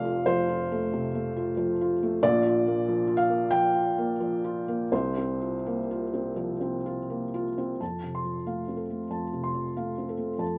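Played in a loose, rubato 4/4, this short passage from a longer neoclassical minimalist piano piece breathes freely, its pulse bending with the phrasing rather than holding a strict count. A felt-muted upright piano plays alone for the full 10.6 seconds, its soft, mellow tone shaped by thick felt that gives the sound a dark, muffled character. The instrument sits up front and close, and its register spans from deep bass notes up into a gentle upper range. The harmony drifts from F to Bb, then hangs on a suspended C7sus4 before settling back on F at 7.8 seconds, where a new closing phrase begins. A moderate studio reverb adds a touch of air around the piano while keeping the mood hopeful and intimate.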